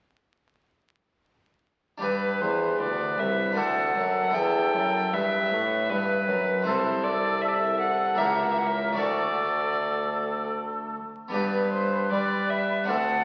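A rich violin with a gut-string, reedy tone sits close and up front, carrying the melody in period style from 2.0 to 13.2 seconds in this flowing, radiant baroque-style sonata movement with continuo. Beside it, a mellow oboe with light vibrato plays a second line that sounds distant and roomy, while a soft-attacked bassoon with a vintage character supplies the bass. An airy, brilliant harpsichord, plucked and full in the French style on three sets of strings, stands forward as the accompaniment. Cut from a longer piece, the passage moves at 77 BPM in 3/4 in G major, its harmony passing from G through D7, Em, Am/C and C#dim7 to D before settling back on G at 11.3 seconds. The sound blooms in a wet concert hall and carries the crackle of a very old 78 rpm record.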